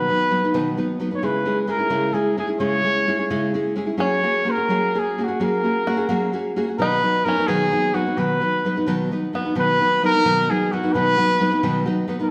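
A roomy recital-hall reverb surrounds this festive, proud mariachi excerpt in 6/8 at 87 BPM in B major, cut from a longer piece. A mellow, distant trumpet with light vibrato carries the melody up front in a classical solo style, over a fingerpicked nylon-string guitar whose classical accompaniment moves from B through C#m and F#add9 back to B. Between 4.0 and 9.6 seconds a twangy, percussive banjo played with fingerpicks adds a second line in the background.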